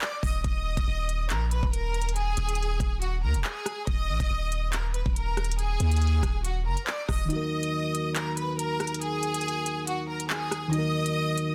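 Dry and dense, this short cut from a longer drill track sits in a heavily limited modern master with little reverb, and it feels ominous and cold over a half-time groove. A bright studio violin section carries the melody throughout, bowed and lush with smooth, even vibrato, while an electronic drill kit of knocking kick, crisp hi-hats, handclaps and rim clicks drives underneath. A deep, sine-toned 808-style bass holds long, mellow, decaying notes up front until 7.3 seconds, when the kick also falls silent. Just before that, at 7.2 seconds, muted felt-like synth keys arrive, soft, intimate and full-bodied. Their dark tone blends triangle, sawtooth and square waves with a noise layer and a sub octave, shaped by a filter sweep and chorus, while the harmony rests on Eb minor.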